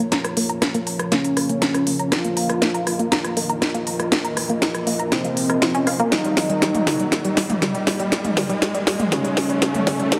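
Melodic techno at 120 BPM in Bb dorian, hypnotic and melancholic, this excerpt is one long build-up over Bbm shifting to Eb/Bb at 6.1 s, with an up-front, tape-tinged electronic drum kit of cracking snare, smooth hats, rim clicks and toms playing a fill throughout, while a barely audible fat sawtooth bass sits underneath. A deep, moody pad with ring modulation and chorus holds sustained chords as a punchy, wave-folded unison pluck spins delayed arpeggios under a filter sweep, and from 1.1 s a nasal, mellow lead with vibrato, chorus and delay carries a narrow melody under its own sweep. A background riser enters at 0.9 s, and the whole mix sits in a lush hall reverb with a heavily compressed, radio-like sound.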